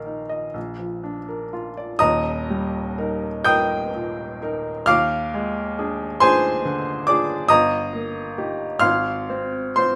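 A clear, up-front upright piano opens this ten-second excerpt from a longer piece, a romantic nocturne for solo piano in 12/8 that breathes with free rubato. The mood is dreamy and serene, beginning on a suspended chord that settles into its resolution before the music moves into a new section at 2.0 seconds. From there the harmony drifts through the home chord, a diminished colour held over it, and gentle inversions that keep the line floating. The piano's tone is woody and intimate, with the audible noise of its action giving the sound a close, natural presence. The playing spans the instrument from the deep bass to the high treble, set in a light reverb that keeps its clarity intact.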